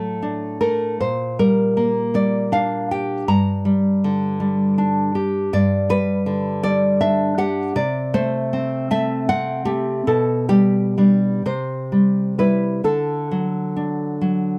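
This romantic piece for solo classical guitar moves in a slow, rubato 6/8, its dotted-quarter pulse drifting between 41 and 54 BPM. A fingerpicked nylon-string guitar carries everything alone, sitting up front with an acoustic, warm tone that spans from G2 up to Bb5. The passage opens in G minor, turning through D/A and Gm/Bb before brightening into G major at about 5.5 seconds. From there the harmony moves through Am/C, G/B and C, arriving on D at roughly 12.8 seconds, all in a sunny, warm mood. Light reverb gives the guitar a gentle sense of space in this short fragment cut from a longer piece.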